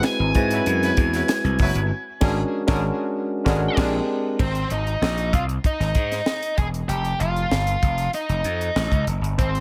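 A small room with light reverb gives this short cut from a longer piece of polished 1980s jazz-funk pop a glossy, breezy sheen. A dark, fuzzed-out octave lead guitar carries the melody throughout. Growly, punchy slap bass with overdrive sits up front, entering at 0.2 seconds. A dry, tight funk drum kit with a high-tuned snare, tight kick, hi-hat and crash cymbal grounds the groove in a straight 4/4. In the opening bars a barky, lightly overdriven tine electric piano with lush chorus comps over altered dominant chords, while a vintage horn section with gentle vibrato and digital delay adds a quieter second line, and a hollow, very quiet group handclap appears only briefly at the start. The full band hits a run of accents from 1.9 seconds until the piano drops out at 4.4 seconds, where the harmony opens onto suspended and add9 colours for the second section.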